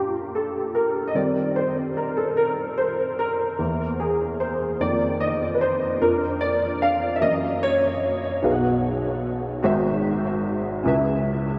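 A slow, straight 6/8 lilt at 50 BPM in dotted quarters carries this uplifting, reverent gospel fragment, tuned to A4 = 436 Hz and settling into B major at 8.4 s. A lone baby grand piano, warm, natural and up front, spans G#1 to Bb5 with ensemble chorus and tape echo, moving through rich harmony such as Caug7/E, F7sus4 and Gb7 before landing on B6, G#7b13 and C#m7. The dreamy mix is soaked in a huge ambient reverb with a 7.8-second decay.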